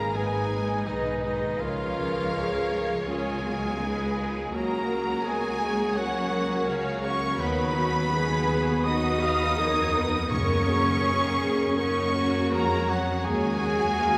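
A long, reverberant cathedral acoustic surrounds this fragment of a cinematic, emotional film score, giving it a tender, uplifting character and a flexible, rubato feel. A violin section carries the melody with lush vibrato, while an airy, distant flute ensemble and a close, mellow solo cor anglais trace second lines, joined by a softer violin line set in the background. Violas fill in the accompaniment, and a dark, roomy French horn section holds sustained chords. Cellos and double basses anchor the bass with a rich, bowed tone. Timpani with medium mallets make a brief, dry appearance between 10.3 and 11.4 seconds.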